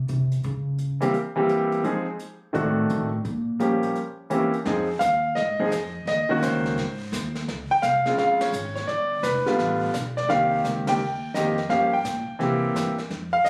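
Cool and moody, this swinging jazz piano trio excerpt in F minor moves at a brisk 170 BPM, with a woody pizzicato upright bass taking the opening solo over the brushed snare, hi-hat and dark ride cymbal of an airy, polished kit. The up-front grand piano carries the melody with a clear, natural tone, and the full band hits accents at 8.4 and 10.8 seconds as the harmony moves through minor sevenths and altered dominants. The recording has the feel of a phone capturing the room, with a light touch of reverb.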